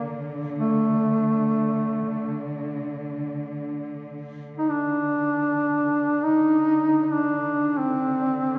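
Longing and solemn, this short passage from a Caucasian lament unfolds in free time, drawn from a longer piece of Caucasian folk music. A mellow duduk carries the melody up front as a solo voice, its folk-style line moving between A3 and Eb4 with vibrato and scooped notes. Beneath it, a chamber cello section holds a bowed drone on D3, its tone dark and woody, with vibrato and a close, ensemble character sitting well behind the duduk in level. Both parts sound together for the full 8.6 seconds, giving the phrase a steady, grounded foundation. A cathedral reverb with a 4.2-second decay wraps the studio ambience in a long, hallowed tail that deepens the mournful atmosphere.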